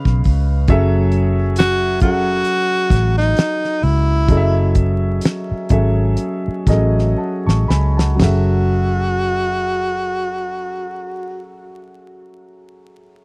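A breathy tenor saxophone carries the melody from 1.6 seconds, its clear subtone colored by vibrato and scooped notes in a jazz-style solo that stays within a narrow span from D#4 to F#4. This short, smooth and introspective slice of R&B and neo-soul sits in F# dorian at a slow 58-68 BPM in 4/4, with a swung sixteenth-note feel, moving from a C#7 to F#m7 and gradually slowing between 0.7 and 8.2 seconds. A dark grand piano with long sustain provides mellow accompaniment across the whole passage, while a vintage muted electric bass, played with the fingers, adds a round, punchy, foam-muted low end. A damped 70s drum kit with a fat snare, tight kick, hi-hat, splash cymbal and toms drives the groove until a drum fill from 7.2 to 8.2 seconds leads into the second section. The sound is a dry, close 1970s-style studio recording with vinyl crackle and every part placed up front.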